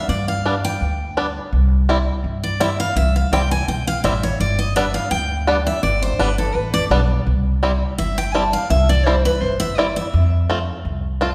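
A bright, full-bodied picked steel-string acoustic guitar opens this driving, virtuosic bluegrass excerpt, taking the solo spotlight over a lightly swung beat. Within the first second a woody, thumpy pizzicato upright bass and a twangy, percussive fingerpicked banjo carrying the melody join it, all three sitting up front. The trio rings out in a reverberant recital hall as the harmony moves mostly between C and G before landing on F.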